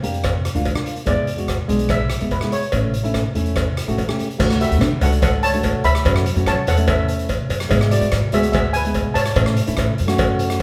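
A bouncy, carefree calypso opens with thumb-plucked nylon-string guitar, woody pizzicato upright bass and an up-front street-band drum kit with a boomy kick, dark cymbals, hi-hat and rim click, while a cowbell joins at 0.2 seconds. A mellow, shimmering steel pan carries the melody from 1.1 seconds over chords moving from Bb through E7 and A to Dadd9 and F#m7, with the guitar's full body and finger squeak sitting beneath it. The band plays live together in one large room washed in a wet studio reverb, and the passage is cut from a longer piece.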